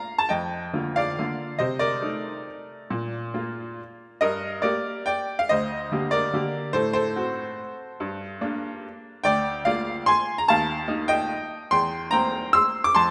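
A bright upright piano carries this short classical waltz alone, its brilliant, woody tone slightly detuned and close up front, with a short sustain that keeps each note crisp. In 3/4 with a rubato feel, the tempo drifts between 132 and 153 BPM, giving the dance a graceful, sparkling lilt in Bb major. The harmony moves from Bb through a diminished chord to G minor, then passes through Bb7 and Eb before reaching C7 near 11.7 seconds. The piano spans from D2 up to E6, covering both the low and upper registers. A moderate concert hall reverb surrounds the instrument with a natural sense of space. The passage runs about 13.1 seconds and is cut from a longer piece.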